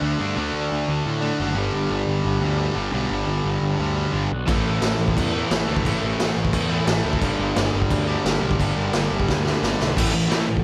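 Rowdy, energetic punk rock at 175 BPM in a straight 4/4, this short, dry cut opens with a bright, up-front distorted electric guitar riff joined by a hollow-body overdriven semi-hollow guitar sitting in the background over a growly fuzz picked electric bass, moving through D5, G5 and A5 power chords until a gritty, punchy raw garage drum kit with crash, kick and snare crashes in at 4.5 seconds and throws in a fill from 9.3 seconds.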